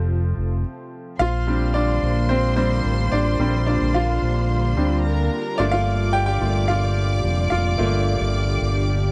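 A dry, close 1970s-style studio sound with light reverb frames this hopeful piano-driven pop excerpt in Bb major at 109 BPM, where a bright, polished grand piano sits up front and carries solo passages with a brief stop from 0.6 to 1.2 s, a round, dark fingered electric bass is prominent beneath, a lush, detuned sawtooth unison pad with chorus holds slow-blooming chords, and a distant, smooth bowed violin section with vibrato enters at 1.2 s as a second line while the harmony moves from F to Bb6 to Gm7.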